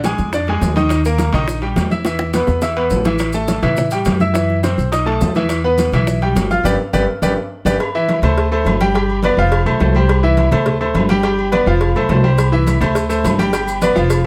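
A bright, brilliant grand piano with audible action noise and a woody, thumpy pizzicato upright bass on gut strings sit up front from the start of this sunny, danceable salsa at 209 BPM in C major. Behind them sit damped, soft-handed congas, round, low-tuned bongos with cowbell, ringing metal-shelled timbales with agogo bells in a distant large room, and grainy maracas that drop out at 7.7 seconds and return at 12.4. Drum fills and a band accent lead into a second section at 7.8 seconds, where the wandering chords of the opening settle into a repeating C, D5, G7, F cycle in a moderate studio reverb, in a passage cut from a longer piece.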